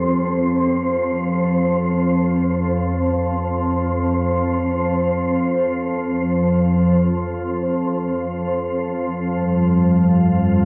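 An organ-like drone sits up front in this desolate, dark ambient drone piece, holding a calm, sustained tone from F2 to F3 with slow attacks and long releases, thickened by ensemble chorus, a phaser and built-in reverb. Beside it, an airy, breathy wind-like texture of tuned noise hovers between C4 and F5, drifting through built-in reverb and a shimmer reverb. Very faint carillon bells ring bronze arpeggios from G3 to G4 during the opening, with a minor-third overtone and a padded clapper, dropping out at 5.8 seconds. At 10.1 seconds a deep, moody ambient pad enters in the background on G3, a detuned sawtooth sound with a sub octave, treated with chorus and built-in reverb. The music moves in free time over an Fsus2 chord, tuned to A4 = 441 Hz, and everything floats in a huge, wet reverb with an 8.7-second decay; the excerpt is cut from a longer piece.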